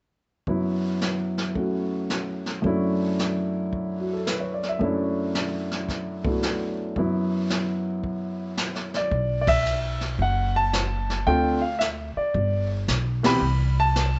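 A mellow club room with a moderate reverb and a softened, rolled-off top end frames this cool, late-night jazz piano trio excerpt in B minor, swinging at 111 BPM in 4/4. A present, polished grand piano carries the melody up front from the start, its long sustain bathed in plate reverb as it ranges from F#2 to B5 over suspended F#7sus4 and Bm11/F# harmonies. A brushed drum kit sits lower in the mix, with dark cymbals, a medium-tuned snare, hi-hat, ride and a boomy kick giving it a mid-forward, small-room character. At 9.1 seconds an upright bass enters, plucked, woody and thumpy with steel strings, playing up front in a low register. With its arrival the harmony moves through B5, Dm7, G and Cmaj7(no3), and the band hits accents together at 9.4 and 13.2 seconds.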